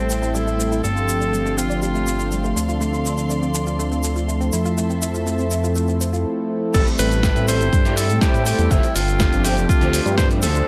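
A light reverb and digital ambience give this groovy, cosmic nu-disco excerpt a spacious sheen, set at 122 BPM in a straight 4/4 in A minor, cut from a longer piece. A fat, detuned sawtooth bass sits up front from the start, under a smooth, chorused analog pad and a dark, bowed string section played sul tasto with light vibrato, both pumping against the sidechain. An analog pluck with a nasal, noise-layered edge spins arpeggios through chorus, phaser and tape echo in the background while filter sweeps move across both the pad and the pluck. A gritty, sampler-style drum kit with a medium-tuned snare, crash, hi-hat and shaker keeps time alongside a tube shaker and group handclap. A raspy, forceful tenor saxophone calls out briefly with tape echo, then returns at 6.7 seconds after a short break, when the drop brings in a punchy, layered electronic kick and a dark, slightly broken-up electric guitar riff with ensemble chorus. 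The chords move from Am7 through G9sus4, Dm7 and Fmaj7 before circling back to Am7 for the drop.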